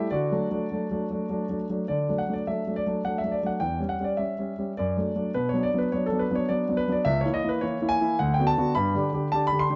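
A classical-period piano sonatina in D major, this short passage cut from a longer piece has a playful, cheerful mood, moving in three-four time at 105 BPM with a straight feel. A concert grand piano plays solo throughout, ranging from C#2 up to C6, its tone intimate and natural with deep bass and long sustain. The instrument sits up front, close enough that the noise of its action is audible beneath the notes. The harmony starts on D and moves through diminished and minor colours, including C#dim/E, Bm and A#dim/C#, before arriving on G near 8.8 seconds. A moderate large-studio reverb adds a gentle tail, and the production is dark and warm, with the top end rolled off.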